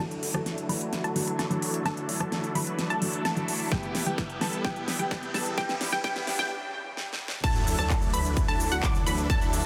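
Festival progressive house with an uplifting, anthemic mood, this clip is cut from a longer piece and opens on a build-up in which a soft, felt-muted upright piano with audible action noise plays accompaniment beside dark, veiled con sordino strings sustaining chords far in the background, both breathing with sidechain pumping. A lush, wave-folded unison pluck spins high arpeggios and a huge, euphoric supersaw lead carries the riff through phaser, delay and a filter sweep, while a big-room kit of huge snare, crisp hats, handclaps, rim clicks, shaker and crash drives drum fills. A punchy, up-front electronic kick joins at 3.7 seconds as the harmony moves from Dadd9 to Em, with a very quiet riser and sub drop underneath. The piano falls away into a short break at 6.5 seconds, and the drop lands at 7.4 seconds on Dadd9 with an impact and a thick, saturated, chorused saw bass holding a low D. 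The master is dense and heavily limited, with light reverb and a tape-warm glow on the drums.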